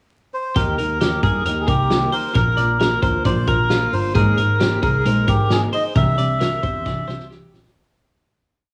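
Bittersweet and restless, this short jangly indie pop piece moves at 133 BPM in a straight 4/4, with a reedy, breathy melodica carrying an up-front motif-based melody from 0.3 seconds before a fingerpicked steel-string acoustic guitar with tube saturation, a ringing twelve-string electric guitar with tremolo and tape echo, a round, foam-muted picked electric bass with slides, and a loose drum kit with a fat snare and punchy kick join at 0.6 seconds. The chords move from Eb through Bb and Abadd9 to Cadd9, and a drum fill arrives at 6.9 seconds as the whole piece fades out from 6.0 seconds. It has the feel of a home cassette recording, with light small-room reverb, vinyl crackle and a rolled-off top on the drums.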